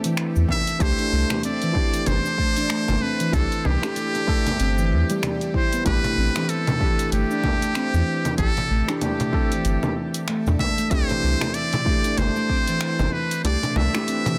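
A buzzy, close-miked trumpet with metal mute leads this mystical, meditative organic downtempo piece in A minor at 95 BPM, its jazz-style solo full of vibrato and scooped notes drifting through delay and shimmer reverb over ringing handpan arpeggios with tape echo, a round sine sub bass, a soft felt-muted upright piano pumping in the background, an overdriven electronic kick that drops out at 13.4 seconds, a layered deep house kit of cabasa, congas, finger snaps and hi-hat, and a small, dry frame drum entering at 6.0 seconds, all moving from C to Am7 in a dense, heavily limited mix.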